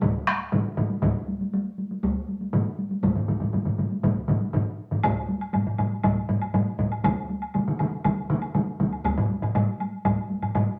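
Driving and powerful, this Japanese traditional taiko ensemble piece, cut from a longer work, is carried by two compressed and saturated solo taiko drums struck with heavy sticks, one of them up front, joined by a third solo drum with an up-front, hard-stick, vintage, band-limited tone that drops out at 8.9 seconds. A quieter taiko ensemble plays in a live room, and after a brief break at 4.5 seconds a woody, close and dry woodblock enters at 5.0 seconds. A wet studio reverb surrounds the drums in a straight 4/4 feel.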